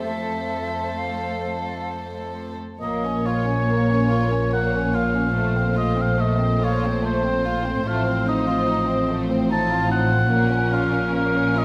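Classical and elegiac, this short passage cut from a longer piece moves in a yearning, rubato 3/4 at roughly 63-74 BPM in Bb minor. A distant, woody violin section carries the melody with vibrato and a lush sul tasto tone, while a second violin section, close and floating, traces a pure second line beneath it, and a dark viola section murmurs accompaniment in the background. A warm cello section holds the bass from the start, and a bright, airy silver flute adds a brief, expressive second line that stops at 1.9 seconds. At 2.8 seconds the harmony turns to Bb minor as an up-front solo oboe enters with a warm, lightly vibrato line, joined by a dark French horn section in soft, present sustained chords and a double bass section deepening the bass. The chords pass through F over Bb and F7 over A before settling back on Bb minor, all set in a moderate scoring-stage reverb.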